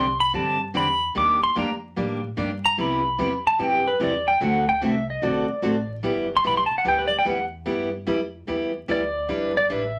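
A twangy, bright electric pedal steel guitar sits up front and carries the melody as a solo throughout this cheerful, down-home western swing excerpt, its clean, compressed tone shaped by fingerpicks, slide and volume swells. Beneath it, a full-bodied picked dreadnought acoustic guitar, also placed up front, picks out the accompaniment until 9.8 seconds. A woody, thumpy upright bass with gut strings is played pizzicato low in the mix. The tune moves at 147 BPM in 4/4 with a swung eighth-note feel in G major, passing through chords such as Ebmaj9, Cmaj7, D7 and G6 before a repeat of the opening section at 7.7 seconds. The sound carries a short studio ambience, tube saturation, vinyl crackle and lossy compression artefacts, giving it a vintage, worn character.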